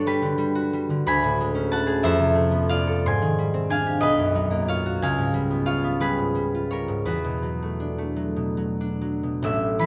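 A 6/8 pulse moves freely in rubato at roughly 44-64 BPM, counted in dotted quarters, in this serene, dreamy classical piece for solo concert harp, cut from a longer work. The fingerpicked harp rings out up front across a span from A1 to E6, drifting through lush chords such as Gmaj7, Fmaj7#11 and Bmaj7#11 before settling on E9sus4 at 7.0 seconds. Close, detailed miking captures every string, set within a moderate recital hall reverb.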